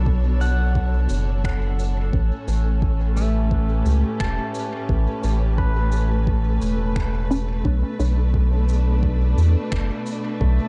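A dark, reverb-soaked mix opens this spacious, deep ambient dub piece at 87 BPM in B minor, where a round analog bass sits up front under a lush, distant string section holding sustained chords, a soft electronic kick sits in the background alongside big-room shaker and finger snaps, a twangy pedal steel guitar plays echoing arpeggios with slide and volume swells, a glassy, drifting harmonics texture hovers faintly, and from 2.1 s a muted, gritty dub chord stab with phaser, echo and a filter sweep joins as the chords move from Bm7 to A9 and back.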